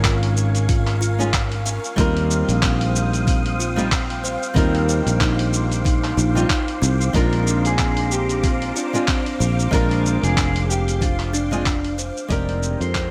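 A fingerpicked flamenco guitar with delay, a buzzing, woody kalimba playing delayed arpeggios and a silky string machine with phaser and ensemble chorus open this sunny, blissful sunset chillout piece, over a growly, up-front fretless bass and a gritty, compressed sampler-style kit of handclaps, hi-hat and shaker with a thumpy electronic kick. A breathy, wind-like noise texture drifts in the background as the chords move through lush, extended harmonies. At 7.2 seconds a dark, slightly broken-up electric guitar with lush chorus takes the melody, and the bright, 1980s-style digital production fades out from 10.6 seconds.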